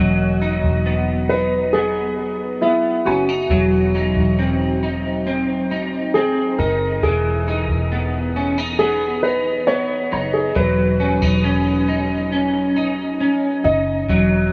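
A vast ambient reverb with a long 6.5-second tail bathes this dreamy, ethereal dream pop excerpt, cut from a longer piece and moving in a straight 4/4 at an unhurried pace, tuned slightly sharp to A4 = 445 Hz. A felt-muted upright piano carries the melody with a soft, mellow, intimate tone, its notes trailed by tape echo. Up front, an electric guitar sits at the edge of break-up, its picked arpeggios warm and slightly gritty, thickened by ensemble chorus and tape echo. Beneath them, a foam-muted vintage electric bass played with the fingers gives a dark, round, punchy low end. All three parts play throughout the 14.5 seconds over a slow chord progression, opening on Emaj9 and settling on Badd9/E at 10.6 seconds.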